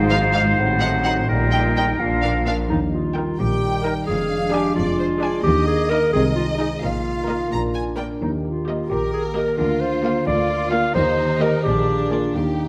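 A smooth solo clarinet carries a second line through this playful, magical 6/8 film cue, joined for only the first 2.5 seconds by a clear oboe and an airy flute, while a close, expressive violin section traces another line, a distant violin section sings the melody from 0.1 seconds, vibrato-rich violas with portamento and cellos sit in the background, a focused double bass section anchors the bass, a mellow French horn section holds sustained chords and a ringing, thumb-plucked harp spins arpeggios, set within a wet scoring-stage reverb.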